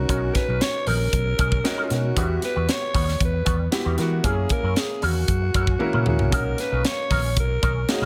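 A straight 4/4 groove drives this glossy, urban slice of polished 1980s jazz-funk pop, built on an up-front, crisp fusion kit with a high-tuned snare and tight kick, a dark, round, amped fingered electric bass, and very quiet, thick-skinned congas tucked beneath. A breathy, raspy alto saxophone carries the pop-style melody with vibrato and a smooth top. A baby grand piano bathed in lush chorus and a twangy, compressed electric guitar riff through an envelope filter and ensemble chorus fill out the Bmaj9, Emadd9 and F#7 changes, with a drum fill at 5.8 seconds leading back to Bmaj9 in a light, small-room reverb.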